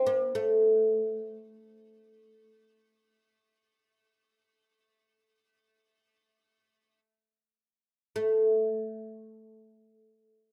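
Arabic music in free time, this short excerpt cut from a longer piece carries a hypnotic, longing mood. A solo oud, woody and deep with its double strings plectrum-plucked on the fretless neck, sits up front and plays from the start until 8.7 seconds within a narrow range from A3 to a quarter-tone-inflected B flat. A lush hall reverb surrounds it, and the rough home demo mix gives the sound an unpolished intimacy.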